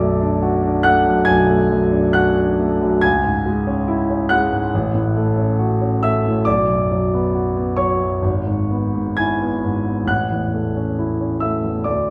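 A slow, rubato pulse at 68 BPM in 4/4 carries this brief, nostalgic passage cut from a longer romantic nocturne for solo piano in A major. The grand piano plays alone throughout its 12.1 seconds, its tone open and up front, ranging from G#1 low in the bass to G#6 high in the treble. The harmony drifts from Bm7 through C#m, F#m/A and Bm before E/G# settles onto A at 10.1 seconds. A dreamy, wet recital hall reverb with a 1.8-second tail surrounds the instrument, lending the classical miniature a lingering glow. Tuning sits a touch below standard, at A4 = 439 Hz.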